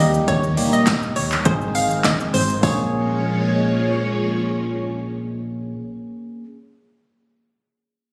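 A short, driving and bittersweet dance-pop excerpt in Bb dorian at 102 BPM opens on a drop, with a hollow, bouncy square pluck melody carrying chorus and delay, bell-like tine electric piano, a swirling, warbling string machine with ensemble chorus and phaser, and a round FM bass all pumping against a punchy, up-front deep house kit of kick, snare, handclaps, hi-hat and shaker, plus a jingly tambourine in the background. The harmony moves from Eb to Ab before settling on Bbm7 at 2.6 seconds, and the drums drop out shortly after, all heard through a lush hall reverb as if caught on a phone in a club.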